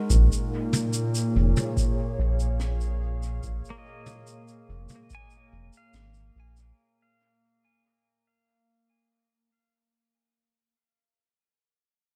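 Hazy and spacious, this ambient dub fragment, cut from a longer piece, moves in a straight 4/4 and is tuned slightly low, to A4 = 435 Hz. A warbly, nostalgic, lo-fi pad sits up front with detuned sawtooth and triangle tones, slow attack and long release, holding a sustained A#m7 chord through chorus and its own reverb. Beneath it, a round, dark analog bass blends sawtooth and sine with a fast attack, while a dry, deep electronic kick with a tape-warm tone anchors the low end. A jazz brush kit, natural and acoustic in a studio room, adds shaker, a medium-tuned snare and toms. Far back in the mix, a bright, clean electric pedal steel guitar played with fingerpicks and slide traces arpeggios with volume swells and tape echo, and it lingers to 9.9 seconds after the rest of the band, which fades out over the first 6.8 seconds.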